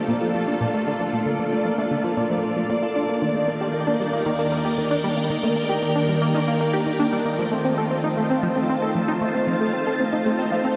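Mysterious and hypnotic, this fragment of ambient, sequencer-driven space music moves in a straight 4/4 over a huge, wet reverb with a long 7.7-second decay. A tight, driving sequenced synth plays an evolving riff throughout, its detuned sawtooth tone shaped by a filter pluck and fast attack and softened by chorus, tape echo and shimmer reverb into something mellow. Over it, a lush vintage string machine holds full, sustained chords from a sawtooth sound with a sub octave and soft attack, sitting up front with phaser, ensemble chorus and shimmer. A ringing, fingerpicked Celtic harp spins bright acoustic arpeggios through a low-pass filter, tape echo and shimmer reverb. The harmony moves from Bbmaj7 to Ebmaj7 at 3.2 seconds and F7 at 7.4 seconds, with all three parts sounding together across the whole 10.8 seconds.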